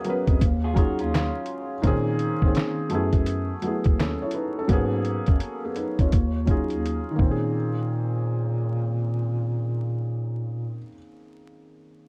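A dark bass clarinet anchors the low end of this reflective, nostalgic lo-fi hip hop excerpt at 84 BPM, its smooth-topped jazz solo with vibrato sitting up front over swung sixteenths and a cycle of minor eleventh chords. A compressed, pitched-down, muffled sampler kit with a thumpy kick, fat snare, hi-hat and handclaps plays until 7.4 seconds, while a soft, intimate felt-muted upright piano, colored by cassette tape and plate reverb, continues to 12.1 seconds. Early on, a slightly broken-up electric guitar through a small old amp adds a brief picked second line with analog delay, all within a dark, warm production dusted with vinyl crackle.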